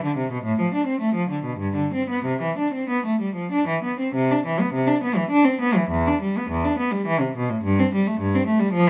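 This is a baroque-style classical suite movement for unaccompanied cello, in C major and 3/4 time, with a serene, radiant mood. A single bowed cello carries the whole passage. Its gut-string, period-style tone sounds rich with a reedy edge, and it sits up front in the sound, spanning E2 to D4. The tempo moves with rubato, ranging between 88 and 109 BPM. A light reverb gives the solo line a sense of space. The opening section gives way to a second section at 4.1 seconds, and the fragment, cut from a longer piece, ends at 8.9 seconds.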